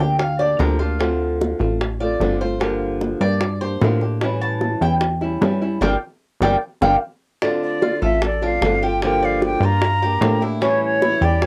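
Heard through a home cassette recording in a booth, this nostalgic, danceable excerpt of Cuban son and guajira in D minor moves at 150 BPM, with a fingerpicked flamenco guitar, a punchy, plucky analog bass and round, low-tuned bongos under soft hands backing a metallic, double-strung Cuban tres that solos in arpeggios until 7.4 seconds, with a band accent from 5.8 seconds, before an airy, hollow concert flute with vibrato takes up the melody at 7.4 seconds.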